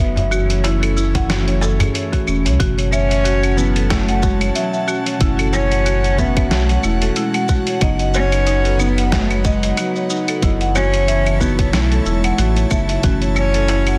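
A swung 92 BPM downtempo groove in F# dorian sets a mystical, organic mood: a tight, tape-warm electronic kick (from 1.1 s) and a gritty sampler-style kit of claves, hi-hat, shaker and snare (from 0.2 s) ride under a round, up-front sub bass, while a woody hard-mallet marimba arpeggiates through digital delay over an airy, breathy pad pumping with sidechain, a crisp metal-shell darbuka sits in the background at the start and close, muted felt-like synth keys arrive at 2.6 s, and an intimate bowed cello carries the melody with light vibrato from 2.9 s, all in this dense, heavily limited excerpt from a longer piece.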